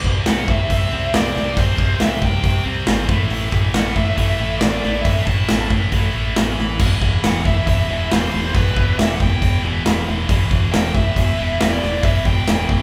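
Heavy and aggressive, this hard rock passage, cut from a longer piece, drives along in a straight 4/4 feel with a scooped, high-gain rhythm guitar riff, double-tracked and bright, over a big, up-front acoustic drum kit with punchy kick, medium-tuned snare, hi-hat and bright crash cymbals. A growling fingered electric bass, round and overdriven, sits underneath, while a dark, nasal lead guitar with a parked wah carries the melody from 0.3 seconds. The band sounds like it is playing live in one room with light reverb, moving through chords of C, A5 and E5.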